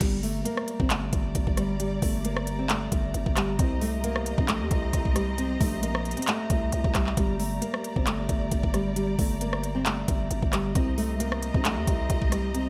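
Dark, eerie trap-leaning hip hop in a half-time feel, this excerpt sets a thumb-plucked nylon-string guitar melody in the low register over lush, bowed studio strings played sul tasto with vibrato, all under light reverb. A growling, buzzy 808-style bass with a fast attack and decaying tail anchors the Gm to Cm7 progression, while an up-front, tape-warm electronic kit brings a knocking kick, crisp hi-hats, handclaps, rim clicks and crash cymbal. Every part plays throughout the 12.7 seconds, a fragment cut from a longer piece.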